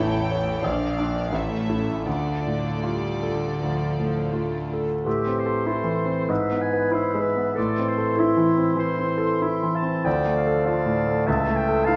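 Rubato in 4/4, this brooding, tragic romantic movement for piano and orchestra, cut from a longer piece, keeps a clear, up-front concert grand on the melody throughout, first over soft-attack sul tasto strings (floating violins, darker second violins in the background, rich violas and intimate cellos) that last until about 5 seconds, then over a solo clarinet entering at 5.0 seconds, joined at 5.1 seconds by an airy small flute group, a distant oboe and a very quiet mellow bassoon, all set in a moderate scoring-stage reverb.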